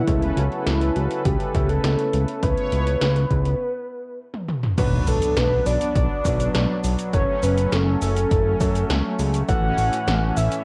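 A nocturnal, cinematic synthwave passage, cut from a longer piece, opens at once on a soft, round synth lead layered with a sub octave, carrying the melody with chorus, vibrato, cassette tape, analog delay and plate reverb. Beneath it a brassy, bold analog pad holds sustained chords with a soft attack, tremolo and sidechain pumping, while a polished grand piano adds stabs in the background through tape echo. A fat, detuned, saturated analog bass sits up front, and, just after the start, a punchy electronic kick and tape-warm 80s pad drums with metallic hats, shaker, crash and a gated snare and toms set a straight groove. A break arrives at 3.6 seconds, capped by a drum fill that leads into a new section at 4.8 seconds, where a very quiet electronic impact sounds and the harmony moves through Bm, F#m and A. The kick drops out at 9.6 seconds, and the whole piece carries the hazy character of a home cassette recording in a moderate studio room.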